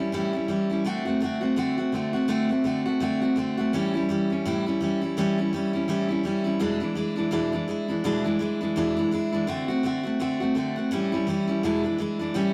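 A rough rehearsal-room recording with a moderate small-room reverb frames a single picked steel-string dreadnought acoustic guitar, bright, full-bodied and up front, playing solo from 0.0 to 12.5 seconds. This retro, rowdy rock fragment, cut from a longer piece, rides a swung eighth-note feel in 4/4 through a progression of A7, D7 and E7 chords. The guitar ranges from E2 up to F#4.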